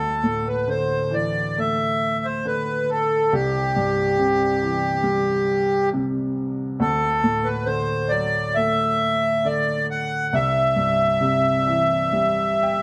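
Accordion and upright piano begin together in this tender, pastoral Celtic slow air, an excerpt cut from a longer piece. The accordion carries the melody up front with a reedy, airy tone and a slow beating in its voice, moving freely in a rubato feel around 68 BPM in 4/4. Beneath it, the upright piano sounds clear and woody, spanning from deep bass notes to the upper register as it supports the tune with chords that shift between Dsus2, C and D in a D mixolydian colour, tuned slightly high at A4 = 444 Hz. Near the close, the piano adds a brief fill from 12.1 to 12.8 seconds. Close, detailed microphones capture both instruments, the piano sounding present and polished, set in the moderate reverb of a recital hall.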